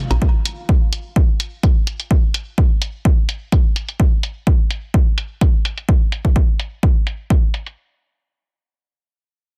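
Dense, heavily limited and set in a digital ambience, this short cut from a longer minimal techno track has a cool, clinical mood over a straight 4/4 pulse. A punchy, tape-warm analog kick drum sits up front from 0.2 to 7.4 seconds, re-recorded in a small room. An electronic hi-hat, also analog and captured in a small room, runs from 0.1 to 7.8 seconds, its tone dulled by low-pass filtering on the hats, snare and room.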